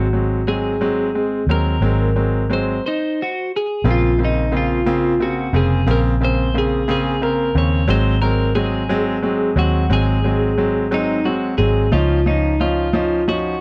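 A twelve-string electric guitar, a bright concert grand piano and a muted fingered electric bass open together on an Ab7 chord in this dramatic, melancholic six-eight pop ballad in Bb minor, moving at 59 BPM in dotted quarters. The twangy, compressed twelve-string carries the melody with a slapback echo over the brilliant, polished piano accompaniment and a round, punchy, foam-muted bass, all three sitting up front. After a stop from 2.8 to 3.8 seconds, the music settles into a new passage through Bbmadd9, Ab7 and Dbadd9, in a dry, close 1970s-style studio sound with light reverb, cut from a longer piece.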